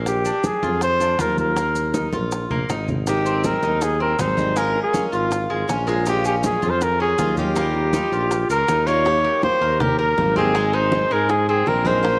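A straight, danceable son and guajira groove in four rides on bongos and congas, with a drum fill around 2.1 seconds, in this short cut from a longer Latin piece. The congas sit in the background with a bright, thin-skinned, compressed and saturated tone, while the low-tuned bongos sound round, close and very quiet, and dry, grainy maracas shake until 9.1 seconds. Up front, a trumpet carries the melody with vibrato, a punchy sound and a smooth top, over a tuba bass with light vibrato. A Cuban tres picks metallic arpeggios on its doubled strings, and a boxy, picked acoustic guitar adds swing-style accompaniment from 3.1 seconds. The chords move through seventh, suspended and added-note colours before a short closing section, and the mix sits in a moderate plate reverb that gives the mood a warm glow.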